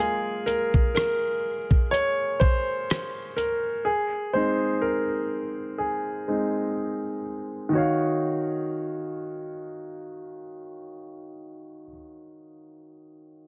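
A slow 62 BPM groove in 4/4 with a light sixteenth-note swing opens this moody, late-night contemporary R&B excerpt in Eb dorian. A gritty, compressed sampler-style drum kit with a thumpy kick, hi-hat and rim click sits up front until 3.6 seconds. The clear, intimate concert grand piano, low-pass filtered and carrying a filter sweep through its opening stretch, continues to 13.5 seconds, with deep bass, long sustain and audible action noise under a light reverb as the chords move from a rootless Gbmaj7 through Abadd9 to Ebm7 at 7.7 seconds.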